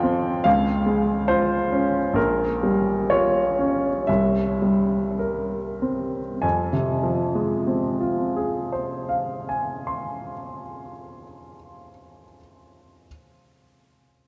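A clear baby grand piano opens this brief fragment of a romantic character piece, played alone in 4/4 with a free, rubato feel. The mood is stormy yet bittersweet, and the playing slows through the first 6.4 seconds as the harmony moves from Db through Gm7b5/Bb to C7. At 6.4 seconds a new passage arrives on an F minor chord, and the piano continues until 13.1 seconds. The instrument sounds natural and up front, with a short sustain on each note, spanning from Bb1 up to C6. Around it, a wet cathedral reverb places the piano in a vast, echoing space, with a long tail that lingers after the notes.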